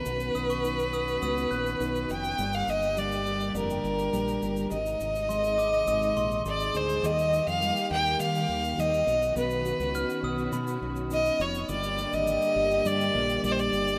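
Heard through a rough home-demo mix bathed in a lush hall reverb, this heartfelt, carefree acoustic pop excerpt moves at 103 BPM in a straight 4/4, cut from a longer piece. An up-front, biting violin carries the melody with vibrato, an airy bow and a touch of delay, over a full-bodied picked dreadnought guitar, a round, punchy fingered electric bass and a soft, sul tasto studio string section holding sustained chords in the background. A grainy egg shaker ticks quietly behind, while a bell-like glockenspiel struck with brass mallets rings a second line from 0.3 s until 10.9 s, as the chords pass from Badd9 and Gm through Ab and Eb and a new passage begins at 7.0 s.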